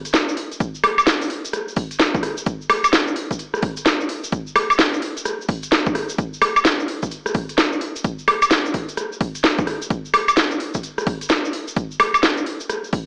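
A skippy, swung sixteenth-note groove drives this bouncy, sunny UK garage excerpt, with a layered electronic drum kit up front playing crisp hats, a cracking snare, rim clicks and woodblock, all with a tape-warm, large-room character. A punchy analog kick joins at 0.6 s, while a grainy, bright tube shaker sits in the background. Light reverb and an AM-radio tone colour the whole recording.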